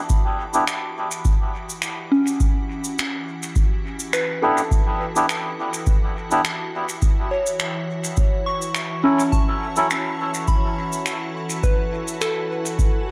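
A reedy, breathy melodica, filtered and dub-echoed up front, sounds a brief stab near the start and then returns with stabs from 4.4 to 9.9 s in this deep, spacious ambient dub fragment in E dorian at 104 BPM with a light 16th-note swing, as a dry, analog electronic kick anchors the groove, cabasa and finger snaps echo in a studio room, a soft FM synth bell ripples arpeggios through chorus and phaser, and a bright, detuned organ-like pad fades in on sustained chords that shift from Em7 to F#m7/E at 7.0 s, all set in a moderate spring reverb.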